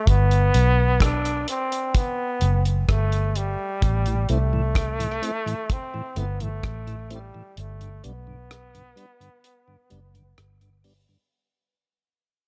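This hypnotic, deep dub reggae fragment opens with a brilliant trombone at 0.0 seconds, its vintage, vibrato-laden solo line sitting up front and trailing a tape echo as it moves between G3 and D4. Almost at once a vintage muted fingered electric bass and a deep reggae drum kit settle into a slow 64 BPM in straight 4/4. The bass is dark, round and foam-muted, and the dry, smooth kit offers a tight kick, hi-hat and rim click, both placed prominently in the mix. At 4.1 seconds a mellow tonewheel organ slips in underneath, clean and round with vibrato, key click and a slowly turning rotary speaker. The harmony rests on G, shifts to A minor, then returns to G. Break passages frame the opening and closing stretches, and the whole clip sits in light studio reverb under a fade-out, with the organ lasting until 11.2 seconds.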